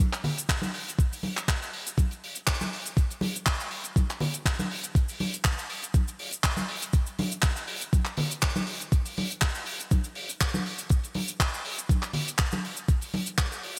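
This nu-disco excerpt moves at 121 BPM in 4/4, with a light swing on the sixteenths that gives its sleek, sensual mood an easy sway. A tight funk drum kit opens at 0.0 seconds, acoustic, dry and up front, with cabasa, handclaps and hi-hat, and a gated reverb on the kit. Congas join at 0.2 seconds: acoustic, bright, damped and medium-tuned, with a thin-skinned tone from hard hands and the feel of a small room. At 0.5 seconds an electronic, sampler-style kick drum arrives, thumpy and overdriven, sitting up front as the loudest part of the mix. The whole 13.8-second passage stays in one section, cut from a longer piece, framed by light reverb, studio ambience and a bright 1980s-style digital production.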